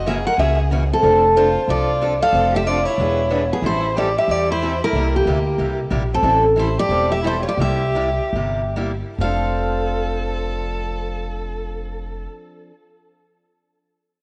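Acoustic string swing in the jazz manouche style, charming and playful, in which a bright, full-bodied dreadnought guitar picks the melody up front over a boxy parlour guitar's accompaniment with audible finger squeak, while a warm, expressive violin bowed close with vibrato and portamento adds a second line, a woody, thumpy upright bass on gut strings plays pizzicato, the guitars and violin carry a cassette tape character, a lush hall reverb surrounds the home cassette recording, and the music slows between 6.2 and 9.2 seconds in this cut from a longer piece.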